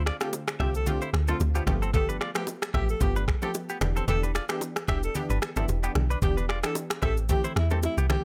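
Afrobeats at 112 BPM with a swung sixteenth feel, mellow and smooth, where a deep, round log drum bass sits up front beneath an electronic afro-pop kit of knocking kick, rim click, finger snaps and shaker (its kick dropping out from 5.2 to 6.2 seconds), while a breathy, whispered alto saxophone carries an intimate melody with light vibrato and delay, a twangy, clean direct-recorded electric guitar picks a bright riff through delay, a detuned analog pluck adds chorused chords, and close, dry bongos and congas are struck with hard hands in the background over Dm7, G9, Em7 and Am7, in a dry mix cut from a longer piece.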